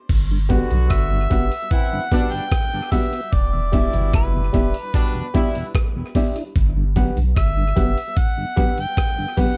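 A thumpy, gritty sampler-style breakbeat kit of crash, hi-hat, kick and rim click opens this warm, uplifting roots reggae excerpt, together with a round sine sub bass that stops at 8.0 seconds. A mellow tonewheel organ with chorus vibrato, slow rotary speaker and tube saturation sits in the background, joined by a clean, fingered electric guitar, barky overdriven reed electric piano stabs, and a tight horn section carrying a second line until 5.7 seconds; the organ, guitar and horns carry tape echo. From 0.9 seconds a clear, close-miked harmonica with tape echo takes the melody with scooped notes and light vibrato over a Gmaj7 to Em7 change, all in a dark production with little reverb.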